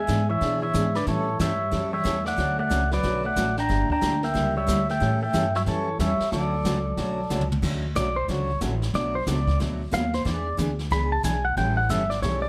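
Up-front, twangy pedal steel, played with fingerpicks and slide and bathed in plate reverb, carries the melody of this cheerful western swing cut at 183 BPM in D major, then takes a solo from 7.6 seconds after a drum fill. A dark, hollow-body jazz guitar plays a second line until 7.5 seconds, while a bright, jumbo steel-string acoustic picks out accompaniment with audible finger squeak. A woody, thumpy gut-string upright bass and a distant, roomy brush kit with dark cymbals and a boomy kick keep the swing moving through the moderate studio reverb.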